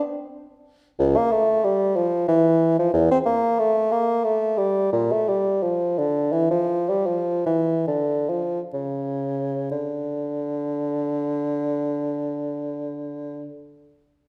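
A solo bassoon enters at 1.0 s with a warm, close-miked tone and light vibrato, playing an introspective, grave baroque-style fantasia in D minor and 3/4, spanning C#2 to C4. The rubato tempo moves between 60 and 94 BPM, slowing from 3.9 to 9.7 s before a new section begins, and the bassoon stops at 13.5 s. Up front in a reverberant recital hall with a 1.4-second decay, the classical-style playing fills this excerpt from a longer piece, tuned to A4 = 438 Hz.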